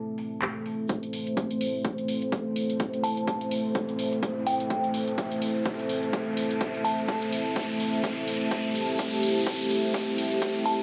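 Bass house at 126 BPM in A minor, gritty and swaggering, with a swung 16th feel. It opens on a sustained A minor chord from a detuned, sawtooth analog pad that pumps against the sidechain, layered with a deep, wave-folded ambient pad sitting higher, with chorus and its own reverb. Tape-toned handclaps and filtered hi-hats arrive at 0.2 s, a punchy kick sits up front from 0.9 s through a long filter-swept build-up, and a riser climbs from 2.0 s as a crystalline FM bell warbles through dub echo and a drum fill closes the passage.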